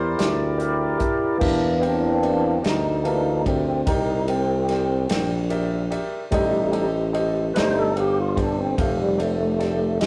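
A rough rehearsal-room sound steeped in wet stone-room reverb frames this rollicking, gritty slow blues at 49 BPM in 12/8, where an overdriven harmonica with light vibrato sounds briefly in the background until 0.6 seconds, a clear, woody upright piano with audible action noise plays a fill before a fat, up-front tonewheel organ through a slow rotary speaker takes a solo from 1.4 seconds, a mellow tuba with vibrato carries the bass, and an airy acoustic country drum kit with a punchy kick enters at 0.2 seconds, all over chords moving from C9 to F9.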